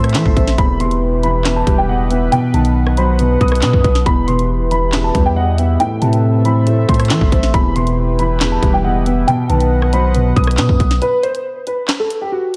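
Lightly reverberant and ominous, this menacing half-time drill excerpt at 138 BPM in E harmonic minor sets a dark, boxy grand piano melody, treated with chorus, delay and a low-pass filter, over a soft felt-muted upright piano with audible action noise, a detuned sawtooth pad with a resonant filter swell, and a velvety synth lead with vibrato sitting in the background, all cycling through Am, Em and B. Up front, a deep sine 808-style bass holds long notes while the drill kit hits hard-clipped kicks, a sharp snare, bright hi-hats, rim clicks and handclaps through vintage 12-bit sampler grit. At 11.0 seconds the other parts drop away for a break, leaving the grand piano and drums to carry on until 12.6 seconds.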